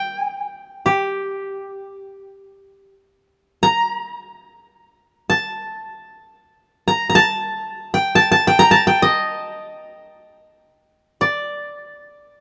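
Japanese traditional chamber music in free time, this solitary, austere excerpt features a solo koto in G hirajoshi, its bright, woody tone played with fingerpicks and placed up front, ranging from G4 to Bb5 across 12.4 seconds in a dark production with light reverb.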